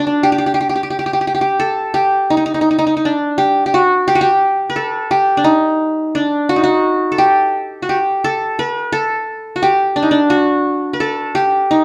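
A moderate, large-studio reverb surrounds a live room sound, with a solo qanun placed up front, its triple strings plucked with fingerpicks to give a mellow yet bright-edged acoustic tone. This passionate Turkish piece moves in 9/8 at 173 BPM counted in eighths, with a straight feel. The qanun carries the whole 11.8-second cut from a longer piece on its own, ranging from D4 to B4-40c.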